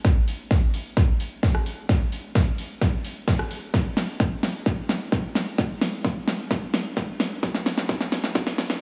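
A straight 4/4 pulse at 130 BPM drives this anthemic, uplifting EDM build-up, cut from a longer piece, with a punchy electronic kick running from the start to 8.4 seconds. A pop drum kit of fat snare, rim click and metallic hi-hats, overdriven and layered, plays a drum fill across the whole 8.8 seconds while a filter sweep spans the same stretch. Both drum parts sit up front, re-recorded in a small room, with a lush hall reverb and a high-pass filter shaping the overall sound.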